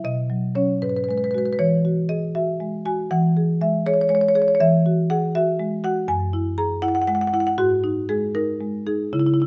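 Close and up front under a light reverb, this brief 9.5-second passage from a contemporary classical piece for solo marimba has a reflective, flowing mood, with the woody, full padauk bars struck by medium hard mallets across a range from F#2 to A#5, played rubato in 6/8 at about 79 BPM in dotted quarters and tuned to A4 = 444 Hz, as the harmony drifts from Badd9 and G#m7 through E69, C#m/E and F#sus2 before settling on G#5.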